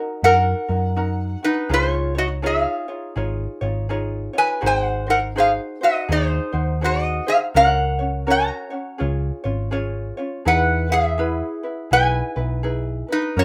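Dreamy and relaxed, this swung Hawaiian piece puts a bright, nasal metal-body resonator slide guitar up front, played with fingerpicks and touched with slapback echo as it carries the melody, while a light fingerpicked ukulele accompanies and a dark, round hollow-body short-scale picked electric bass enters at 0.2 s, in a rough home demo mix with moderate studio ambience.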